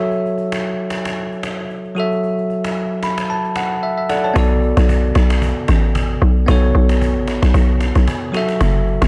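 A hollow, bouncy log drum bass lands up front with the drop at 4.4 seconds, anchoring this deep, hypnotic amapiano cut in B minor at 113 BPM with a 16th-note swing, while a bell-like tine electric piano rings bright and clean over F#m7 and Bm7 chords, adding a fill from 2.8 seconds, and a snappy cajon with snares sits distant in a large room under studio reverb.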